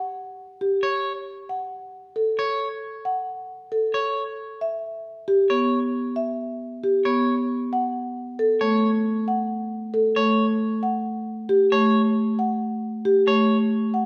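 A round, woody soft-mallet marimba carries the melody from the outset of this propulsive, bright cut from a longer piece of minimalist classical pattern music in 7/8, joined at 0.8 s by twangy, slightly broken-up picked electric guitar arpeggios and at 5.5 s by a percussive hard-mallet marimba accompaniment, all three sitting up front in a moderate recital-hall reverb.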